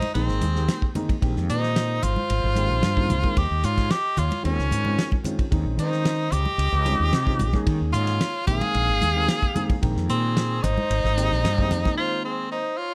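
Intense and funky, this straight 112 BPM electric jazz fusion excerpt in Bb minor features an edgy, forceful tenor saxophone lead with vibrato and scooped notes, bathed in slapback echo and plate reverb, over a distant, airy silver flute second line, a dark grand piano with audible action noise, an up-front fretless electric bass, a dry 70s drum kit with a fat snare and tight kick, and soft-handed congas in the background, before the drums and congas drop out for a brief break at 12.0 s.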